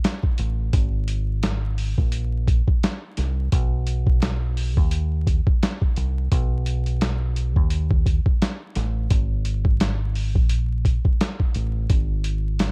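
Confident and nostalgic, this boom-bap hip-hop excerpt moves at 86 BPM in 4/4 with a light swing on the sixteenths, its gritty, pitched-down sampler drums of thumpy kick, medium-tuned snare and hi-hat sitting up front with a compressed, tape-warm character from a small room. A dark, round fingered electric bass joins at 0.4 seconds, heard direct and amped in a low register and also placed up front. The dry sound carries a layer of vinyl crackle throughout the 12.7-second cut.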